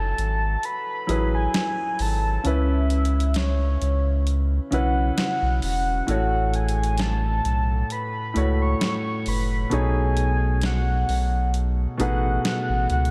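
Contemporary R&B in F# minor at a slow 66 BPM, this moody, late-night fragment of a longer piece drifts through F#m9, C#m7, A6 and B13 with a gentle 16th-note swing. A round, octave-layered synth lead with vibrato, chorus and analog delay carries the high melody over clear grand piano chords and a deep, saturated sub bass that sits thick and up front. A tape-warm, sampler-style drum machine enters at 0.2 s with hi-hat and a medium-tuned snare, and a plate reverb soaks the whole mix in a dreamy haze.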